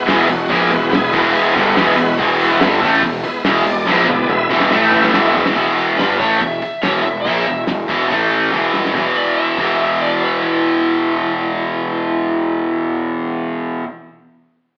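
With an AM-radio tone and a moderate large-studio reverb, this swaggering, sunny classic rock fragment sounds like a band playing live in one room. A compressed, scooped distorted guitar sits up front, joined on the riff by a second overdriven guitar further back, while a growly, punchy fuzz bass and a cloth-damped, thuddy drum kit with a fat snare and dark cymbals fill in underneath, with drum fills along the way. A shouting tonewheel organ with key click and a slow rotary speaker holds sustained chords until 5.6 s, and from 5.5 s an overdriven slide guitar played with fingerpicks adds a second line in the background, carrying on after the drums stop at 9.7 s.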